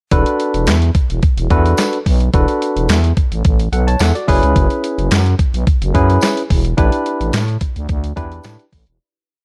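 A dark, warm, dry production frames this short, complete piece of early-eighties boogie funk, slick and made for dancing. A crisp 8-bit digital drum machine sits up front with a sampler-style, tape-tinged punch: a thumpy kick and a medium-tuned snare layered with handclaps drive a mid-tempo boogie beat over hi-hat. A growling, thick FM bass with a fast attack and sustained sine-based tone lays down a fat, syncopated boogie line, also close and prominent. A barky tine electric piano, bright and lightly overdriven through a combo amp, pushes rootless chord voicings and slips in short fills, moving from E9sus4 to F#9sus4 at 4.3 seconds and on to A9sus4. A jingly acoustic tambourine, distant in a large room, marks the backbeat in the background from 0.7 seconds, and the whole verse fades out from 6.8 seconds.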